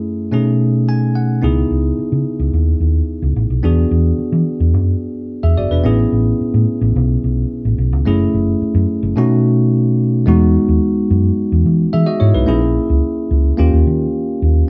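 Polished 1980s jazz-funk pop at 109 BPM in E major, upbeat and urban, opening with a bell-like, clean tine electric piano alone in a short break with a fill before a round, dark, hollow-body fingered electric bass enters up front at 1.4 seconds, the two playing live in one room with moderate studio reverb through rich changes like C#m9, Amaj9 and Emaj7 in this cut from a longer piece.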